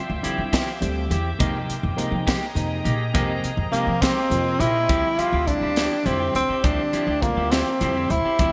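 Bright 1980s-style digital production bathed in a lush hall reverb frames this slick, intense electric jazz fusion in D minor, moving at 69 BPM in a straight 6/8 over Dm11 and Fm11 chords. A crisp fusion kit with a punchy kick and high-tuned snare sits up front beside woody, thumpy pizzicato upright bass. A worn, slightly out-of-tune tine electric piano with light overdrive and clean, picked electric guitar stabs fill the middle, while a morphing, warbling wavetable pad with chorus hovers in the background until 4.9 s. At 3.7 s a breathy tenor saxophone enters up front with subtone, vibrato and scooped notes, its mellow jazz solo trailed by delay.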